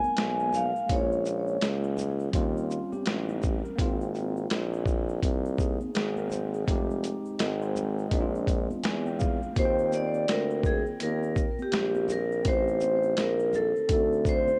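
A ringing, metallic vibraphone played with medium hard mallets stands up front in this smooth, relaxed jazz-hop cut, sounding briefly at the start and returning at 9.6 seconds for a solo, its slow motor vibrato shaped by a boxy small room and cassette tape. Beneath it, a clean tine electric piano sits in the background through its built-in speakers, also on tape, and plays a fill from 8.5 seconds just before the solo. A clear, vintage-toned tuba carries the bass up front with a light vibrato in a jazz style. A gritty, compressed, pitched-down boom bap sampler-style kit with a thumpy kick, high-tuned snare, hi-hat and shaker sets a swung groove, while bright, saturated congas and egg shaker add acoustic texture in the background. The harmony moves through extended chords such as Fm11 and Eb13, and the piece carries a homemade cassette character with light reverb, heard as a section taken from a longer track.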